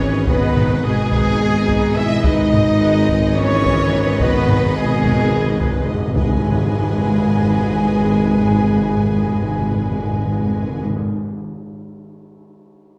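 In a driving 7/8 at 215 BPM with a straight feel, this dark, epic orchestral film cue in G# minor sets a taiko ensemble pounding with heavy sticks under bowed violins carrying the melody, a second violin section and a pure-toned flute group carrying a second line, lush violas in accompaniment, and a full string section and dark French horns holding sustained chords while punchy, distant trumpets fire off stabs. The low end rests on a mellow tuba, rich cellos and an expressive double bass section with portamento, while round, soft-mallet timpani enter at 2.2 s with a fill and a dark tam-tam sounds from 6.2 s as the whole orchestra hits an accent to open a new section. A wet scoring-stage reverb places the ensemble further back in the hall, giving this cut from a longer piece a broad, cinematic weight.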